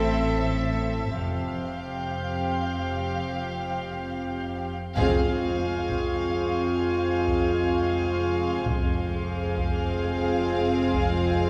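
A distant, roomy French horn section enters at 5.0 seconds with sustained chords, joined by a compressed, saturated taiko ensemble and a brief, very quiet timpani accent in this mysterious, tense suspense film-score passage cut from a longer piece. From the start, dark, woody violins carry a vibrato melody over a pure, floating second violin line. Soft-attack violas, glassy drifting glass-harmonics chords with chorus and their own reverb, close bowed double basses, and background cellos surround them, while an intimate high violin texture shimmers faintly from 5.0 seconds, all set in a wet concert-hall reverb.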